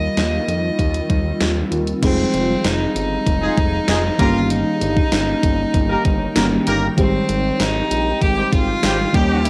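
Romantic and glossy, this fragment of 1980s-style pop sets an intense, richly bowed solo fiddle melody with light vibrato and a cassette-tape tint over a round, warbling FM electric piano treated with chorus, a very quiet cloudy granular pad and a fat, saturated sawtooth bass with a filter sweep. From 0.2 seconds an overdriven, sampler-style 12-bit drum machine sits up front, with a thumpy kick, fat snare, hi-hat, tambourine and crash cymbal. At 3.4 seconds a mellow horn section adds punchy, tight stabs doubled in octaves and trailed by analog delay, all within a homemade cassette recording with light reverb.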